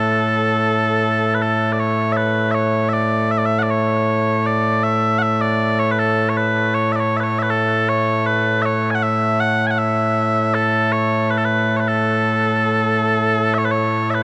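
Ceremonial and proud, this cut from a longer piece of Scottish traditional pipe music sets mellow, sweet small bagpipes alone and up front at 79 BPM in 2/4 and A major, their continuous, vibrato-touched tone ranging from A2 to G#5 over 14.2 seconds, set in a moderate, huge ambient reverb with a 4.0-second tail and dark, warm production.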